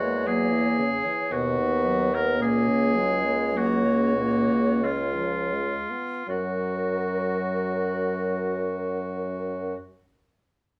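An up-front, warm-toned oboe carries a second line beneath a hollow, airy concert flute melody that sits in the background with vibrato, in this tender, slow romantic movement for wind quintet in F# major and 3/4, cut from a longer piece. A bright, vintage-tinged clarinet and a clear French horn supply the accompaniment, while a bassoon with light vibrato anchors the bass, and the rubato pulse of 39-60 BPM slows through the first 6.3 seconds before a new section arrives on F# at 6.3 s. Moderate reverb and small-room ambience give the quintet an intimate, gentle space.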